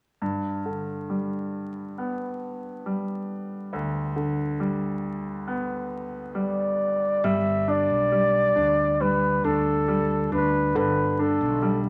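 A bright concert grand piano opens this tender, heartfelt pop ballad in G major at 68 BPM, its brilliant, polished chords sitting up front with deep bass and short sustain. At 6.4 seconds a breathy flugelhorn takes the melody with a soft attack and light vibrato, whispered and intimate, and at 7.2 seconds a mellow fretless electric bass joins, round and punchy, as the harmony moves to Gadd9. The piece carries a moderate club reverb and a layer of vinyl crackle, and it is cut from a longer piece.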